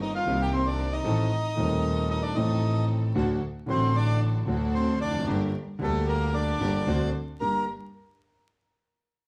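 Bandoneon, violin, piano, string section and double bass all sound together from the start of this tense, passionate tango in G minor, cut from a longer piece and moving at 114 BPM in 4/4 with a rubato feel. The reedy, dark bandoneon carries the melody while a nasal, intense violin with light vibrato and an airy bow traces a second line alongside it. A vintage-toned concert grand, smooth and up front with deep bass, supplies the accompaniment, and a bowed double bass, earthy and distant, anchors the low end. A focused studio string section adds bowed stabs with vibrato from the background. The harmony passes from Cm7 through Adim and D to Gm, then D7 back to Gm at 7.4 seconds, where a brief new section begins just before the parts fall away around 7.6 seconds. The whole is heard from further back in a reverberant room, with vinyl crackle lending an aged patina.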